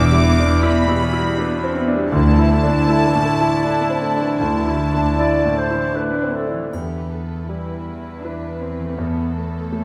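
In a flexible, rubato three-four, this bittersweet, moving cinematic film-score excerpt sets two bowed violin sections on the melody and a second line, played sul tasto with light vibrato. Beneath them sit a clear, polished concert grand piano up front, a rich, floating viola section, and a ringing, fingerpicked concert harp in the background. A woody double bass section and an intimate cello section anchor the low end, the basses dropping out at 5.1 s just as a warm, roomy solo clarinet enters at 5.2 s with a brief second line, and from 6.7 s a faint triangle glints in the background, within a moderate scoring-stage reverb.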